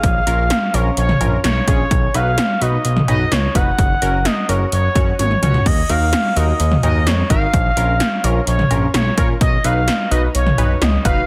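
An expressive, resonant sawtooth synth lead with vibrato, chorus, shimmer reverb and tape echo carries the melody up front in this nostalgic, upbeat synth-pop excerpt at 128 BPM, driven by a smooth gliding synth bass and punchy, overdriven 80s electronic drums with gated reverb on snare and toms, metallic hats, cowbell, crash and a fill at 5.2 s, while detuned, round analog keys with chorus and shimmer reverb enter at 0.3 s over an A#m, Badd9, F# and D#m progression in a dense, heavily limited mix.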